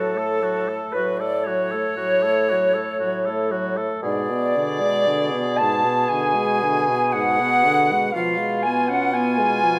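Melancholic and solemn, this slow romantic movement for wind quintet moves at 58 BPM in 4/4 with a rubato feel, set in F# minor and cut from a longer piece. The silver concert flute carries the melody with an airy tone, vibrato and a soft attack. The oboe, mellow with a smooth top, sings a second line beneath it. The clarinet and French horn share the accompaniment, the clarinet sounding distant and the horn roomy, while the bassoon's warm, vibrato-tinged bass anchors the low end. All five play throughout, over a harmony that moves from F#m/A to G#dim at 4.0 seconds and arrives on C#7/B at 8.1 seconds, all within a moderate recital hall reverb.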